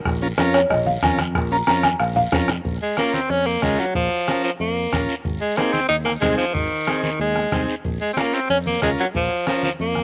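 A buzzing, woody marimba with slapback echo opens this passionate, danceable cumbia, playing a dry, airy solo melody until 2.6 s, with a drum fill in its final stretch. Beneath it, a growly, punchy fingered electric bass and a soft-beaten, vintage-sounding bombo anchor the groove, joined by bright, low-tuned congas and a raspy guiro. A buzzy combo organ with light vibrato supplies clean accompaniment. At 2.8 s an edgy, up-front tenor saxophone takes over with a pop-style solo, its sound touched by slapback echo. The harmony is a simple minor vamp that shifts to a major chord and back. The recording was made outdoors and is dry with little reverb, and the cut begins and ends mid-performance.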